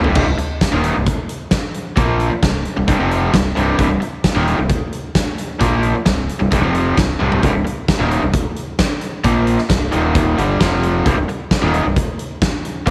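Classic rock with a driving, swaggering feel, built on two picked, overdriven guitars playing the riff together, one bright and compressed, the other raw and lo-fi, over a growling fingered bass that is punchy and gritty with overdrive. A huge arena drum kit sits up front with a punchy kick, medium-tuned snare, toms and bright cymbals in a big, natural room, kicking off with a fill at 0.0 seconds and adding another at 7.2 seconds. The riff moves between power chords on C5, Eb5, G5 and F5, and light small-room reverb rounds out this short cut from a longer piece.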